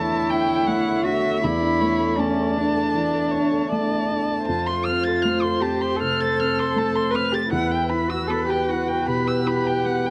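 Melancholic and reflective, this brief excerpt of neoclassical piano and strings drifts at 79 BPM in 4/4 with a rubato feel, tuned to A4 = 442 Hz. A single muted violin carries the melody up front, its con sordino tone veiled and touched with vibrato, while a muted cello sings a second line beneath it with light vibrato and a soft attack. A felt-muted upright piano supplies the accompaniment up front, its thick felt giving a mellow, intimate sound with audible action noise, joined by a quieter muted viola playing with a soft attack. From 0.1 seconds a very quiet, warbly tape-like pad holds sustained chords, a detuned, lo-fi layer with chorus and ring modulation that lends a nostalgic haze. The harmony moves from a chordless opening to F at 4.5 seconds and Emadd9 at 7.5 seconds, all within a dark production and light reverb.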